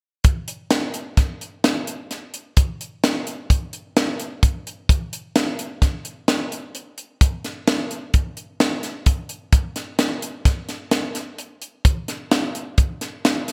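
A crisp fusion drum kit carries this bright, playful rock excerpt on its own, with hi-hat, punchy kick and a high-tuned snare sitting up front from 0.2 to 13.5 seconds. The groove moves at 129 BPM in an odd 5/4 metre with a straight feel, giving the short fragment a nimble, slightly off-kilter lilt. The acoustic kit sounds airy and polished in a studio room, and gated reverb on the drums adds a tight, clipped bloom around each hit. A moderate plate reverb and bright 1980s-style digital production lend the whole piece a glossy sheen. Cut from a longer piece, this section plays as a single passage, a showcase for clean, playful drumming.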